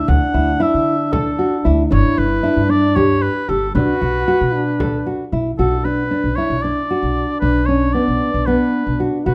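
Captured with close, detailed microphones in a moderate recital hall, this short cut from a longer chamber piece in B minor feels restless and urgent, moving in a straight 7/8 at 229 BPM counted in eighths over Dsus2, G and Bm chords. A soft-attacked oboe with light vibrato carries the melody above a smooth-topped French horn on the second line, while a nylon-string guitar adds dark, full-bodied, thumb-plucked arpeggios. Up front, a woody, thumpy pizzicato upright bass on gut strings anchors the low end, and a deep frame drum sits in the background until 5.5 s, just before the second section begins at 5.6 s.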